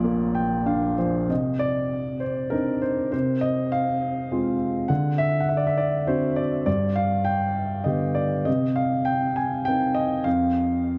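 A baby grand piano sits up front, its smooth, vintage tone and long sustain carrying this moody, brooding passage of lyrical classical solo piano in C minor, cut from a longer piece. The tempo sits around 101 BPM in 3/4, played with a rubato feel, and the instrument is tuned slightly high with A4 at 441 Hz. A short piano fill opens the first 1.3 seconds over a Bb, before the harmony settles into Cmadd9, then Fm/C, D7 and G, arriving on Cm7 and ending unharmonized at 10.3 seconds. The piano spans Bb1 to Ab5, and an analog delay trails its notes. A moderate spring reverb and a studio reverb surround the playing, and the whole recording carries a cassette tape character.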